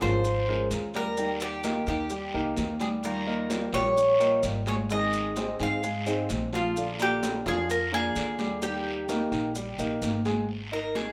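The picked Cuban tres leads this sunny, relaxed clip of Cuban son and guajira, its metallic double strings, some doubled at the octave, sitting up front with the melody. Beneath it, a concert grand piano rolls out mellow arpeggios with deep bass, while a dark, thumb-plucked flamenco guitar adds accompaniment with audible finger squeaks until it stops at 10.5 seconds. An upright bass plays pizzicato on steel strings, sounding woody and thumpy. The percussion brings ringing, high-tuned congas played with soft hands, distant in the background of a large room, along with a raspy guiro and grainy maracas heard close and dry, which also drop out at 10.5 seconds. The harmony moves through Db6, Eb, Ab and Bb chords in a straight 4/4 feel, with a wet studio reverb over the mix.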